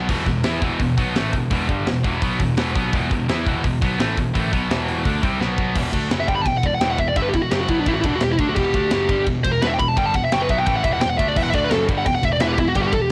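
Dark and relentless, this heavy metal excerpt opens on a bright, picked high-gain guitar riff doubled by a scooped, up-front second guitar, over a barky, gritty overdriven tine electric piano playing the bass through a combo amp and an airy, polished drum kit with bright cymbals and a tight kick. After a drum fill at 5.4 seconds, the scooped guitar drops out and the solo section begins at 5.8 seconds, with a dark, up-front high-gain lead guitar entering at 6.2 seconds, while a double-tracked, compressed overdriven guitar slips into the background at 11.4 seconds. The guitars carry a cassette-tape coloring, and the whole home recording sounds dry.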